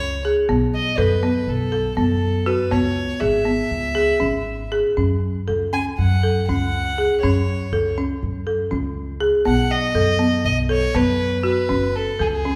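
A straight 9/8 pulse at 241 BPM in eighths drives this restless, hypnotic contemporary chamber excerpt in F# dorian, where a rustic, dry folk marimba spins arpeggios over thumpy, dark pizzicato upright bass while a single bowed violin floats a pure, soft-attacked sul tasto melody through chords moving from B5 and C#m7 to F#m and B7, the whole 12.6 seconds set in a wet recital-hall reverb.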